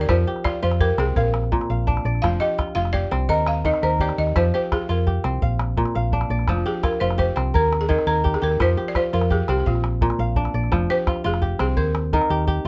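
This West African traditional piece, a short cut from a longer performance, has a reflective, hypnotic mood in a straight 12/8 feel. A crisp, ringing, fingerpicked kora plays arpeggios up front. A woody, buzzing balafon struck with hard rubber mallets carries the melody, and a small, close calabash keeps the percussion. A dark, round hollow-body electric bass also sits up front, all within a light reverb. Over a repeating cycle of chords, the music moves into a new section at 10.7 seconds, where the balafon takes a solo.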